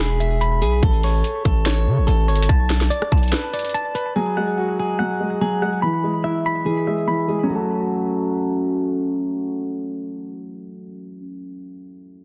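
Menacing and brooding, this trap-style hip hop excerpt sits in F# minor at 144 BPM with a half-time feel in 4/4. A clean, twangy electric guitar plays picked arpeggios from the start to 11.3 seconds, its compressed tone softened by a low-pass filter and trailed by tape echo. Underneath, a distorted 808-style bass hits heavy and saturated with a fast attack and a noise layer, while a trap kit of hard-clipped kick, sharp snare, rim click and metallic hats drives the opening. The bass drops out for a break at 3.3 seconds, and the kit carries on until about 4.1 seconds. At 4.2 seconds a dark, boxy grand piano enters with long-sustained accompaniment through a low-pass filter, as a filter sweep carries the section over chords moving from F#sus2 to E and on to F#m. The mix has light reverb and a dense, heavily limited modern master that keeps every part up front.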